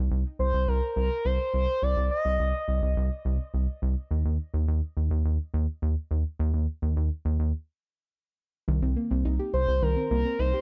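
Upbeat and nostalgic, this synth-pop excerpt at 105 BPM rides a bouncy, hollow square-wave bass up front while a smooth, expressive synth lead with vibrato, chorus and tape echo sings at the start and returns at the close, and after a stop from 7.5 to 8.7 seconds a soft, round pluck enters with its own chorus and tape echo as the harmony lands on Cm7, the whole mix sitting in a digital ambience.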